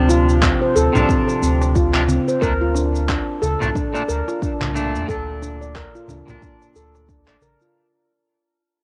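A ringing, nitrided-steel handpan sits up front in this earthy, meditative organic downtempo excerpt, its fingertip arpeggios close-miked, dry and full as they float over a 90 BPM groove in 4/4 with a 58% swing on the 16ths. Beneath it, a round, sine-like sub bass holds deep, sustained notes with tube saturation and sidechain pumping, while a clean, bright, twangy electric guitar adds picked accompaniment colored by cassette tape and analog delay. The rhythm comes from a gritty, compressed sampler-style soul kit of cabasa, handclaps and toms, joined at 0.4 s by an overdriven, layered electronic kick, with a clay-shell darbuka played by soft hands in the background. The harmony moves from Dm7 to Bbmaj7 at 2.4 s, tuned slightly low to A4 = 436 Hz. The whole passage has the hazy character of a home cassette recording with light reverb and lossy compression artefacts, and it fades out from 0.6 s as a section cut from a longer piece.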